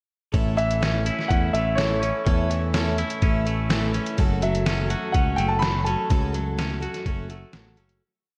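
A shimmering, octave-doubled twelve-string acoustic guitar provides the accompaniment in this short, jangly folk rock and heartland rock piece, strumming eighths in open chord shapes with a boxy parlour tone, audible finger squeak and a slapback echo. A clean, twangy electric guitar with a scooped, compressed edge adds picked arpeggios as a riff, also carrying slapback echo. Underneath, a growly, round electric bass sits up front and is locked to the kick drum of a muffled, pitched-down, sampler-style trip hop kit that plays a pop groove with a thumpy kick and medium-tuned snare. A warm, natural grand piano enters at 0.6 seconds with a motif-based melody in period phrases, touched by digital delay, and stops at 7.5 seconds. The whole verse moves from A to F#m and sits in a lush hall reverb that gives it a big arena sound and a nostalgic glow, with a fade-out beginning at 6.1 seconds.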